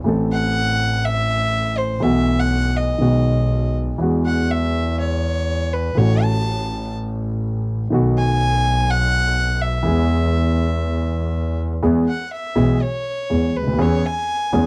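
Tango with a passionate, melancholic pull and a loose, rubato feel, heard in a dry, close 1970s-style studio sound that sets the bass and violin up front. A concert grand piano with deep bass and short sustain carries the accompaniment from the first moment, while a single bowed double bass adds an earthy, lightly vibrato-touched low line from 0.1 seconds. A bowed violin, biting yet smooth on top, solos from 0.3 seconds onward through the whole excerpt, as the harmony moves from A minor through suspended and sixth chords toward E.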